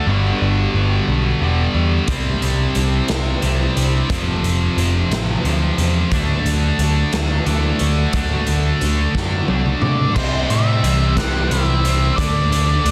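A scooped, high-gain guitar riff sits up front in this cathartic, anthemic quiet-loud alternative rock excerpt in a straight 6/8, over growly overdriven bass and a twangy twelve-string electric guitar tucked in the background with lush chorus and analog delay, while a gritty garage drum kit in a stone room enters at 2.1 seconds, plays a fill from 9.1 seconds, and an octave-fuzz lead guitar melody arrives at 9.8 seconds as the chords move from Gmaj7 through Cadd9, F6 and D to C and a closing D5 in a dense, heavily limited mix with light reverb.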